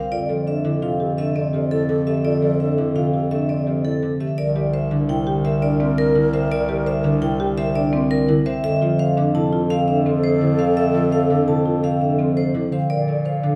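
Classical minimalist pattern music in F major, this propulsive, hypnotic passage at 169 BPM in 6/4, cut from a longer piece, sets a ringing, metallic vibraphone melody with fast motor vibrato over fingerpicked concert harp accompaniment, woody marimba arpeggios under soft mallets, a pure alto flute second line sitting in the background, and a clear bass clarinet carrying the bass. The harmony moves from F69 to C7 at 4.4 seconds, then to Fmaj7 and Bbmaj7, as the music passes from its opening section into a longer second one. A wet recital hall reverb places the ensemble further back in the room, though the harp stays up front.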